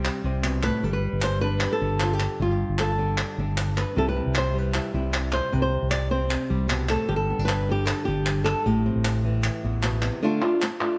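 Intense and passionate, this short flamenco excerpt moves in a straight 4/4 feel, with an up-front, fingerpicked acoustic flamenco guitar carrying the melody across a range from E2 to D5. A dark, round, punchy fingered electric bass also sits up front until about 10.1 seconds, while crisp, saturated palmas hand claps supply the percussion from 0.1 seconds to the end. Light reverb surrounds the parts, the sound bears lossy compression artefacts, and the harmony shifts through C5, Gsus2, C, G5 and Am7 before arriving on Dm at 10.2 seconds.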